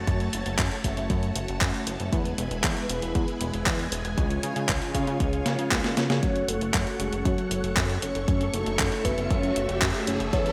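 A punchy, layered electronic kick drives this nostalgic, melodramatic italo disco excerpt at 117 BPM in F# minor, joined by an up-front, tape-tinged drum machine of handclaps, hi-hat and medium-tuned snare in gated reverb. Beneath them sit a glossy, nasal chorused synth bass with tube saturation, lush phased string-machine chords, and dark, round synth brass stabs with chorus, phaser and delay in the background, all moving through F#m, E and C#. A drum fill at 5.5 seconds leads to a full-bodied, octave-layered synth lead melody at 6.0 seconds, treated with chorus, phaser, delay and a filter sweep, while a background riser builds from 7.7 seconds, all set in a bright 1980s-style digital production with a lush hall reverb.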